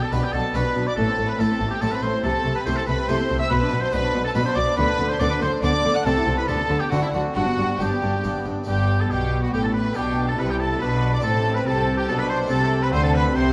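A distant, roomy oboe with light vibrato carries the melody through this lively, festive baroque-style concerto movement in 3/4 at 141 BPM, joined above by a close, gut-string chamber violin section and accompanied by a rich, distant studio violin section on a second line. A dark, nasal viola section and a full-sounding harpsichord strung with two sets of strings sit in the background, while reedy cello and double bass sections enter at 0.1 seconds to anchor the bass. The passage is cut from a longer piece and set in a wet recital-hall reverb with a dark, warm production, its harmony moving from G/B through Am and Bm to a cadence on G before turning back toward Am.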